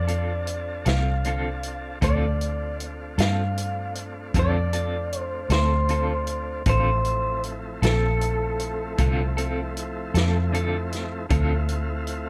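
This brooding, mournful slow blues in D minor at 52 BPM in 12/8 opens on a Dm7 chord, with an electric guitar through a small old amp, slightly broken-up and compressed, picking the melody over smooth tonewheel organ chords turning in a slow rotary speaker and a dark, round, foam-muted fingered bass sitting up front; at 0.1 s a clean picked guitar with tremolo and a vintage drum kit join, the kit bringing a punchy kick, medium-tuned snare and hi-hat with a rolled-off top, under light reverb, before the lead guitar falls away at 10.9 s.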